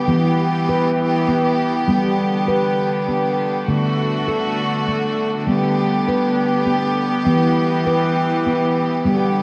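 Gentle and dreamy, this short excerpt cut from a longer piece is meditative world music built around tuned percussion, moving at a slow 67 BPM in a straight 6/8 feel in G major. A handpan plays ringing arpeggios from start to finish, its stainless steel tone mellow and soft under fingertips, sitting up front with a boxy small-room character and a shimmer reverb. Alongside it, a bright chamber string section holds sustained chords throughout, bowed with light vibrato and an earthy ensemble color, also treated with shimmer reverb. The harmony drifts through Em, G, D and back to G before settling on Em again near 7.3 seconds. The whole recording sits in a wet scoring-stage reverb and carries the worn, warbling pitch drift of old cassette tape.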